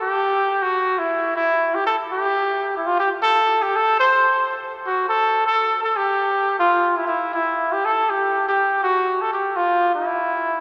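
A warm, vintage-toned solo trumpet sits up front with light vibrato and scooped notes, playing a relaxed, sophisticated swung jazz line at 160 BPM in a church or concert hall, its sound trailing into a lush cathedral reverb across this brief 10.6-second cut from a longer piece.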